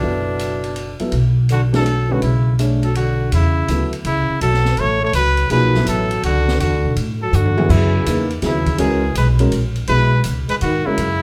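Searching and cool, this modal jazz waltz at 164 BPM in 3/4 swings as a clear, punchy trumpet carries the melody over a breathy, whispered trombone second line, a dark baby grand piano with long sustain, a woody, growly upright bass sitting up front, and an open jazz drum kit with dark cymbals, high-tuned snare and boomy kick that enters at 0.4 seconds and plays a fill at 7.3 seconds, all heard from further back in a wet club reverb as the harmony moves from Bm11 to E13sus4 and then F#13sus4 in this cut from a longer piece.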